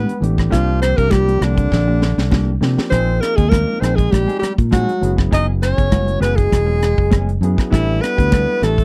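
A dry, close 1970s-style studio sound frames this driving, nocturnal electric jazz fusion excerpt at 100 BPM, where a clear alto saxophone with vibrato carries the melody over a punchy trombone second line with scooped notes, mellow chorus-tinged electric guitar stabs, a round fingered electric bass, a tight funk drum kit with a high-tuned snare and a fill from 1.7 to 2.9 seconds, a dark grand piano with audible action noise, and very quiet thick-skinned congas, all moving through suspended ninth chords.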